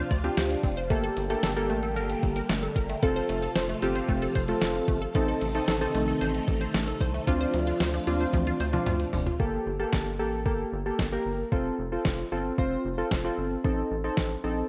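Round analog keys, swirling phased string-machine chords, squelchy blip-pluck arpeggios with tape echo and a rubbery square bass open this nocturnal, cool synth-pop fragment together, joined by an up-front, thumpy 12-bit drum machine whose fill from 8.3 to 9.4 seconds marks the moment the strings and pluck drop away, leaving keys, bass and drums to carry on over a worn, warbling cassette-tape sound with light reverb.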